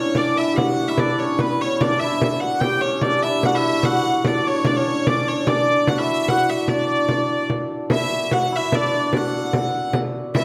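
A rich, smooth hurdy-gurdy leads this festive, rustic medieval dance, its single wheel-bowed, keyed line sitting up front and carrying the melody between B4 and G5. Beneath it, a shimmering, ringing hammered dulcimer plays a second line, from B3 to G4, throughout the brief cut from a longer piece. A small, bright frame drum, played with soft hands and heard close and dry, supplies the percussion from 0.1 seconds on. The tune moves at a lively 147 BPM in a straight 3/4, tuned slightly below standard pitch at A4 = 438 Hz. The music shifts into a new section at 7.9 seconds and runs until 10.4 seconds, with a wet recital hall reverb lending the recording a sense of open space.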